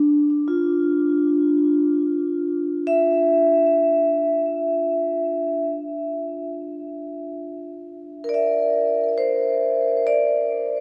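Luminous and weightless, this ambient fragment, cut from a longer piece, drifts at 57 BPM in a straight 3/4 in C mixolydian, resting on a single C9sus4 chord. A solo vibraphone, played with medium mallets and the motor off, sits up front with a metallic, ringing tone and a boxy small-room character, with delay trailing its notes between D4 and E5. The whole recording is bathed in a huge, wet ambient reverb with an 8.0 s decay.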